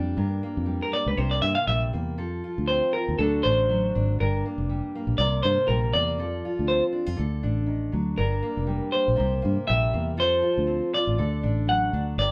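Warm and danceable, this highlife guitar band clip has a clean, hollow-body electric guitar taking a picked solo up front from 0.8 s. Beneath it, a round, foam-muted fingered bass sits forward in the mix, while a dark, full-bodied dreadnought acoustic with fresh strings fingerpicks the accompaniment. The band plays live in one room with a wet studio reverb, circling a repeating Gm, C7, F, D progression with a swung sixteenth-note feel.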